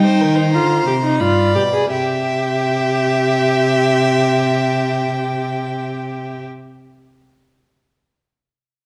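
A smooth, even viola sits up front in this short excerpt from a baroque-style fugue for string quartet, carrying the accompaniment with steady bowed vibrato between Eb4 and Ab4. Beneath it, a dark, woody cello bows out the bass line from G2 to G3, present yet with a distant edge. Two violins complete the texture: the first sings the melody high between G5 and B5 with a focused, rich tone, while the second traces its own line from Bb4 to E5 just beneath. In 3/4 at roughly 81-96 BPM, the mood is driving yet contemplative, and the opening slows over its first 1.9 seconds as the harmony moves from C minor to G7 before arriving on C major for the next section. A recital hall reverb lends the ensemble a deep, resonant glow within a dark production.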